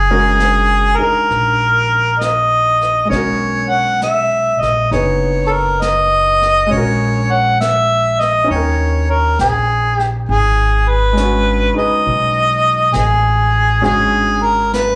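Heard through a club's PA with a light room reverb, this intimate, wistful jazz ballad in G# minor swings gently at 67 BPM as a mellow, roomy harmonica sings the melody up front with light vibrato and scooped notes, a woody pizzicato upright bass sits close beside it, a clear baby grand piano with short sustain shares the harmonica's plate reverb and slapback echo, and a distant brush kit on snare and hi-hat enters at 0.4 seconds in the background.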